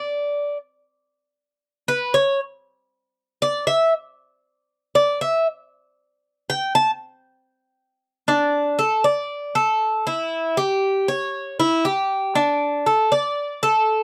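Latin piece at 118 BPM in a straight 4/4, a relaxed excerpt cut from a longer work, where a solo acoustic Cuban tres sits up front with a picked, metallic tone from its double and partly octave-doubled strings, playing across its 14.0 seconds between D4 and A5, soloing through the opening section and moving from one section into a new one at 8.3 seconds, all captured in a dry, close 1970s-style studio sound with little reverb and tuned slightly below standard pitch at A4 = 437 Hz.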